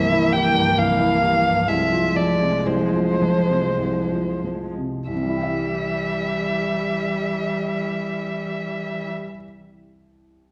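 Heard through worn, warbling old cassette tape with drifting pitch and a wet recital hall reverb, this lyrical excerpt from a slow romantic movement for piano quintet in C major unfolds in a rubato 3/4 at 44-70 BPM, slowing over its first 5.1 seconds as an up-front, dark violin sings the melody with vibrato, portamento and a soft attack, a rich, close cello carries a smooth second line, a viola adds expressive bowed accompaniment with vibrato, and a warm, present baby grand piano supports them before playing alone from 9.1 seconds until 10.5 seconds.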